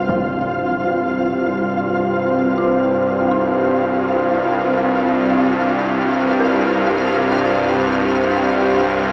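A short cut from a longer dark ambient drone in C minor, in free time, opens at once with a tense, string-like bowed drone sitting up front, its detuned sawtooth tone carrying vibrato and a noise layer, beneath a deep, moody pad that holds a C minor chord through chorus and shimmer reverb. A grainy, flickering granular texture also sits forward, while a very quiet FM bell adds eerie, inharmonic, mellow arpeggios that decay into a huge, wet space with an 8.2-second reverb tail. The desolate mood holds steady across the 9.1 seconds, heard through a small-speaker sound.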